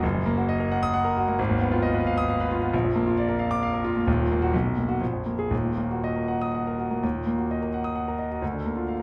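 A clear, up-front concert grand piano plays alone through this stormy, passionate fragment of a classical virtuoso study in Eb minor, moving in a rubato 3/4 at 114-136 BPM across a range from Eb1 to Eb6, with deep bass, long sustain, audible action noise and an intimate yet polished presence set in a moderate large-studio reverb and dark production, before shifting into a new section at 7.0 seconds that ends on a Bb/D chord at 8.4 seconds.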